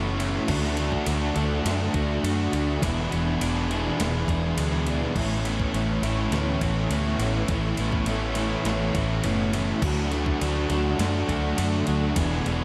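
A hazy, blissful shoegaze and dream pop excerpt opens on a wall of guitars over a round, punchy, foam-muted fingered bass up front: a bright, twangy twelve-string plays clean arpeggios through subtle chorus and delay, while a double-tracked biting overdriven guitar, a dark overdriven guitar with reverse reverb and a thick fuzz guitar with distortion and ensemble chorus churn out riffs. At 0.2 seconds a tape-tinged 80s digital drum machine joins with a thumpy kick, gated reverb snare, ride and crash. The whole dreamy mix is soaked in a vast cathedral reverb as the chords move from D to E7 and A69 before returning to D.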